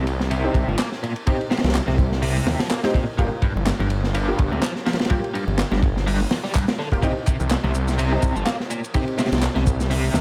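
A small room ambience frames this gritty, funky breakbeat excerpt in C minor at 125 BPM, with a swung 16th feel over Cm, Gm7 and back to Cm. Up front sit a crunchy, saturated breakbeat kit with dark cymbals, a high-tuned snare and tight kick, and a thick, menacing detuned saw bass with tube saturation, while a biting, double-tracked overdriven guitar riff runs through tremolo, a low-pass filter and tape echo. A bold, punchy orchestra-hit-like synth stab with reverb and tape echo enters at 0.4 seconds, followed by very quiet hard-handed congas at 0.7 seconds and overdriven, layered electronic handclaps and shaker at 0.8 seconds.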